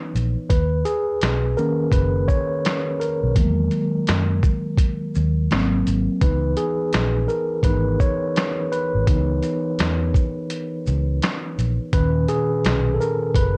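A 16th-note swing of 61% at 84 BPM in 4/4 drives this reflective, hazy lo-fi hip hop excerpt in C# dorian, built on a gritty, compressed, pitched-down boom bap kit with a thumpy kick, medium-tuned snare, hi-hat, shaker and handclaps, re-recorded in a large room and placed up front. A dark, round, punchy foam-muted electric bass enters at 0.1 s. A mellow, clean tine electric piano, up front and softened by cassette tape and a low-pass filter, plays a solo over the whole 13.6 seconds through chords moving from C#m7 and Bmaj7 to Emaj9#11 and G#7, all under light reverb and a cassette tape tint.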